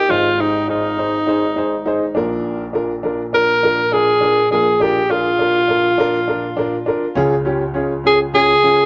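Heard through a moderate small-room reverb with some lossy compression artefacts, this short soul cut from a longer piece feels danceable and joyful in a straight 4/4. A vintage tenor saxophone sits up front with the solo melody, its scooped notes in a pop style and touched with analog delay. An upright piano with a woody, smooth tone and long sustain plays the accompaniment throughout, and the music moves into a new section at 7.2 seconds on a Db chord.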